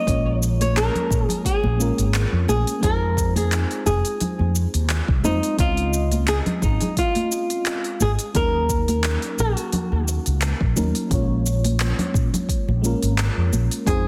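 A fingerpicked flamenco guitar with tape echo carries the melody up front in this relaxed, wistful sunset chillout excerpt in Bb minor at 87 BPM, over a dark, round fretless electric bass with ensemble chorus, a soft, mellow FM electric piano with chorus and tape echo, a deep, layered electronic kick, a smooth R&B kit of cabasa, handclaps and hi-hat re-recorded in a large room, and bright congas in the background, all set in light digital ambience with a dense, heavily limited modern master as the chords move from Bbm7 through Fm7, Dbmaj7 and Ebm7 back to Bbm7.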